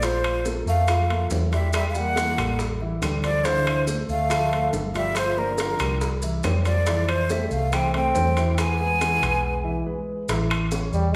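Lively and sunny, this 140 BPM Afro-Cuban jazz passage in 4/4 sets a breathy, vibrato-laden flute melody over a punchy trombone second line with scooped notes in the background, a dark, long-sustaining vintage grand piano and a round, up-front hollow-body electric bass, while tight high-tuned bongos, ringing metal-shell timbales, woody claves entering at 0.2 s and grainy close maracas fill out the percussion in a wet recital-hall reverb, as the chords move from Bbsus2 through Dm9 and Fmaj9 to a break at 9.4 s, with the flute stopping at 9.8 s.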